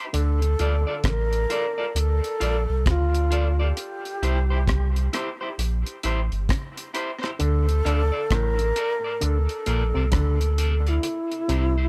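Dub reggae at a slow 66 BPM in D minor, hypnotic and meditative with a swung sixteenth-note feel, moving between Dm and C in this short excerpt cut from a longer piece. A round, sine-like sub bass sits up front beside a dry, dark acoustic drum kit with a tight kick, hi-hat and rim click, while a breathy, tongued alto flute, warm and a little unsteady with vibrato, carries the melody through tape echo. A slightly broken-up picked electric guitar adds accompaniment with vibrato and tape echo, taking on a filter sweep from 3.8 seconds, and a stringy, overdriven clav riff through auto-wah and tape echo makes a brief stab at the start before returning at 7.4 seconds.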